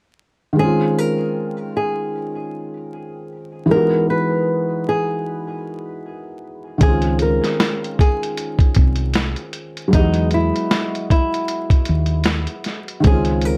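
Vinyl crackle and a light reverb frame this cosy, mellow lo-fi hip hop excerpt, cut from a longer piece and set at an unhurried 77 BPM in 4/4 with a gentle swing on the sixteenths, in Db major. A felt-muted upright piano opens at 0.5 seconds with soft, intimate accompaniment, its audible action noise and cassette-tape colour adding a homely texture. Almost at once a fingerpicked flamenco guitar carries the melody, its fresh strings and finger squeak sitting up front and trailing a tape echo. The harmony moves between Dbmaj9 and Emaj9, giving the short passage a dreamy, floating quality. At 6.8 seconds a dark, round fretless bass with a woody, hollow-body tone and subtle chorus joins alongside a compressed, muffled sampler-style drum kit whose thumpy kick, medium-tuned snare and hi-hat carry the air of a large room.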